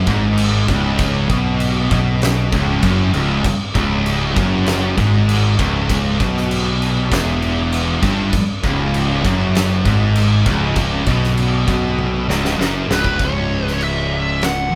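Sludgy and ominous, this stoner and doom metal excerpt grinds along in a straight 4/4, with a bright, double-tracked high-gain guitar riffing over two thick fuzz guitars sitting in the background, all playing low riffs, while a dark, round fingered bass with overdriven fuzz anchors the bottom. An oversized, low-tuned acoustic drum kit sits up front with a punchy kick, fat snare, dark cymbals and toms in a big, pumping room, its saturated, gritty sound driving a fill from 12.0 to 13.2 seconds. At 12.9 seconds a compressed fuzz lead guitar with wah and distortion enters up front for the closing stretch, as the band plays together live in one room with light reverb.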